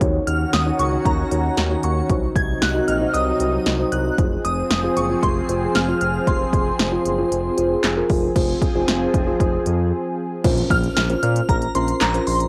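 Cool and melancholic, this synth-pop excerpt sets muted, felt-like keys and a smooth sawtooth bass over a punchy deep house kit of kick, snare, hi-hat, handclaps and crash, while a lush, detuned unison pad with chorus and phaser holds sustained chords until 10.4 seconds, a shimmering, dreamy FM bell with tremolo carries the melody from 0.3 seconds, and a very quiet electronic impact lands after a brief break at 10.5 seconds, with cassette tape coloring the keys, pad, kit and bell and light reverb over the whole.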